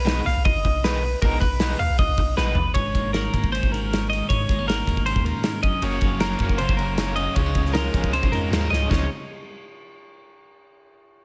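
Bright and intricate, this math rock and midwest emo passage in Db major moves at 156 BPM in a straight 4/4, led by up-front, twangy twelve-string electric guitar arpeggios with a slapback echo over a deep, punchy sine sub bass and a loose acoustic indie drum kit with a tight kick, medium-tuned snare, ride and toms in a pumping small room. A dark, double-tracked overdriven guitar riff with tremolo and slapback echo sits lower in the mix, dropping out at 2.6 seconds and returning at 5.8 seconds, while a second, warm clean twelve-string joins with accompaniment at 2.7 seconds. Drum fills mark the turns as chords such as Abmadd9, Ab9sus4, Gbmaj7 and Dbmaj9 pass under light reverb, and the piece is cut from a longer work.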